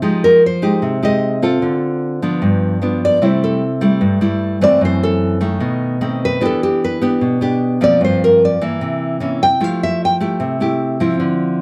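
Bossa nova with a breezy, romantic air, this short cut from a longer piece pairs two up-front, fingerpicked nylon-string guitars, one laying down a full-bodied, deep classical accompaniment throughout while the other carries a warm melody in a higher register from 0.2 to 10.2 seconds, moving through lush changes from Fm9 to Fmaj9 in a moderate studio reverb.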